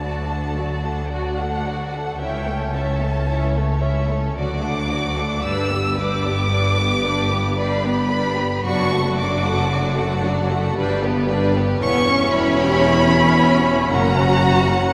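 Bathed in a wet cathedral reverb, this fragment of a slow romantic movement for string orchestra unfolds at 56 BPM in a rubato 3/4 in D major, its elegiac, melancholic mood carried by a dark, distant violin section singing the high melody over an even, up-front second violin line, clear and intense violas, lush cellos and a smooth-topped double bass section, all bowed with vibrato, as the harmony moves from D through G and C#m7/E to arrive on F#.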